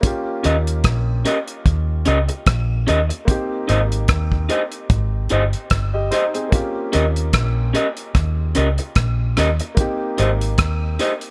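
Studio reverb surrounds this short cut from a longer lovers rock reggae piece, with a dry, damped 70s drum kit of tight kick, hi-hat and rim click sitting up front beside a dark, round, foam-muted fingered electric bass. At a relaxed 74 BPM in Ab major with a gentle 16th-note swing, a slightly broken-up, lo-fi electric guitar through a small old amp plays picked stabs, while a warm concert grand piano with deep bass fills in the accompaniment. The mood is sweet and tender as the harmony sways between Eb7 and Abmaj7.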